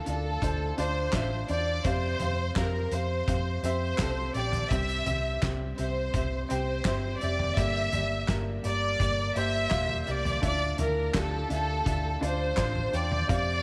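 Uplifting and warm, this short piano-driven pop excerpt moves at 84 BPM in 4/4, with a lush, up-front violin section carrying the vibrato-rich melody over an intimate, woody upright piano with audible action noise, a dark, round, foam-muted picked electric bass, and a loose indie drum kit with a fat snare, punchy kick, handclaps, hi-hat and toms, all set in light reverb and small room ambience as the chords move from Dmadd9 through Fsus2, C and Gm.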